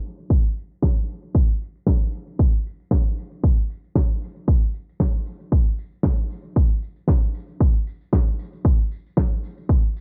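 Sunny and groovy, this nu-disco excerpt at 115 BPM in 4/4 with a light 16th-note swing pairs a fat, dry acoustic tambourine and snare with a rolled-off top against a punchy, layered electronic kick with tape-warm character that enters at 0.3 seconds, both sitting up front in a nearly reverb-free mix while a filter sweep runs across the drums for the full 10.0 seconds.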